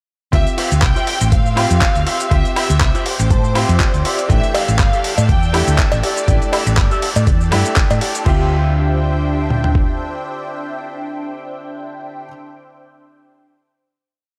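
A dry, close studio sound frames this short, sleek and groovy nu-disco piece in D minor at 121 BPM, its sixteenths carrying a light swing. Up front, a gritty, overdriven sampler-style kit thumps a four-on-the-floor kick with mid and floor toms, while its lighter half supplies a disco backbeat of claps, open and closed hi-hat, ride, crash, shaker and high woodblock until about 8.4 seconds. A round, dark hollow-body bass, fingered and warmed by tube saturation, plays a funky syncopated line beneath, and a dusky, woody violin section with vibrato states hook phrases through a tape echo until 6.7 seconds. A clear, slightly worn baby grand with audible action noise holds rootless chords with syncopated pushes, its sidechain pumping shared by a lush, thick detuned pad under chorus and phaser, while a twangy envelope-filtered guitar picks close-voiced funk chords in the background, a clean guitar fill surfaces around 2.8 seconds, and a dry cowbell joins from 4.5 seconds. 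The harmony moves from Dm11 to A7sus4 and back, and from 8.3 seconds a final Dm11 chord sounds; the bass and kick drop out by about 10 seconds while the piano, pad and filtered guitar carry on to the end.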